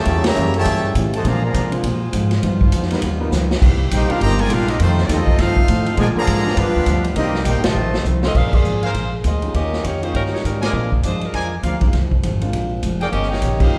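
Bathed in a wet recital-hall reverb, this joyful, brassy big band swing excerpt at 203 BPM in Bb major opens with a brilliant trumpet section carrying the melody over a clear trombone second line and very quiet sustained saxophone chords, driven by a woody, thumpy upright bass and a roomy swinging drum kit with a boomy kick, while a dark fingerpicked steel-string acoustic guitar and a warm grand piano sit in the background, until at 8.3 s a saxophone section takes over the melody with vibrato and a soft attack, and a clear trumpet section soon adds stabs.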